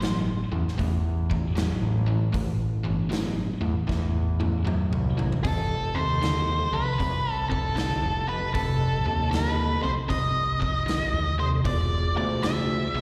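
Blues rock power trio with a southern rock edge, this heavy, gritty excerpt swings at 77 BPM in A minor, as a biting, double-tracked overdriven guitar riff with slapback echo and a growling, round, up-front bass drive over a huge arena drum kit with a punchy kick, whose fill at 3.9 seconds ushers in a dark octave-fuzz lead guitar carrying plate reverb and delay, with a soft, flute-like tonewheel organ holding chords in the background through a slow rotary speaker, all heard as a live gig through the venue's PA in a reverberant hall.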